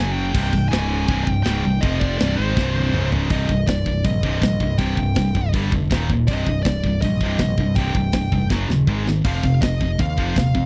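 Heavy metal with a heavy, aggressive mood, cut from a longer piece and driven by a straight 4/4 pulse. A dark, distorted high-gain lead guitar carries the melody, its picked notes trailed by a slapback echo, while a bright, overdriven electric guitar and a scooped high-gain guitar sitting in the background both play the low riff. A growling picked electric bass, bright and overdriven with a direct, amped tone, anchors the bottom end. The tight drum kit enters at 0.3 seconds and sits up front, with bright cymbals, a medium-tuned snare, a tight kick, toms, hi-hat and china cymbal, adding fills at 2.6 and 8.5 seconds, the first leading into the section change at 3.3 seconds. The sound is dry and close, like a 1970s-style studio take in a small room, with the drums the most forward part of the mix.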